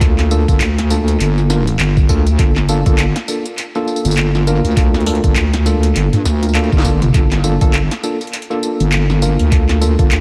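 Playful and swaggering, this glitch hop excerpt struts along at 101 BPM in 4/4 with a swung sixteenth-note feel, sitting in G minor and opening on a Gm9 chord. A heavy, up-front wobble bass carries the low end, its square-and-sine tone saturated through tube warmth and thickened with chorus, yet it stays oddly mellow. A gritty, pitched-down electronic kick thumps beneath it, while a layered electronic kit adds a cracking snare, metallic hats, handclaps, tambourine and toms, all treated with analog delay and caught in a small room. Worn, slightly out-of-tune tine electric piano stabs pump against the sidechain and trail off through analog delay, sounding as if played through built-in speakers. A drum fill arrives at 6.8 seconds, and the whole mix is echo-heavy, with light digital ambience and a layer of vinyl crackle.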